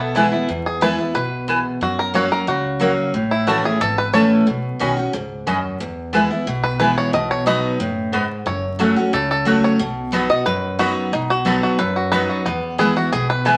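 In a straight, driving four-four, this rustic bluegrass excerpt opens with a brief bite of nasal, bowed fiddle in the background that stops at 0.5 seconds, as a twangy, percussive five-string banjo takes the lead up front with a fingerpicked solo running to the end. A full-bodied picked dreadnought acoustic guitar sits up front alongside it, while a woody, double-strung mandolin adds picked stabs and a thumpy pizzicato upright bass holds the low end in the background. Moderate studio reverb gives the band a sense of room, and vinyl crackle lends the recording an old-time surface.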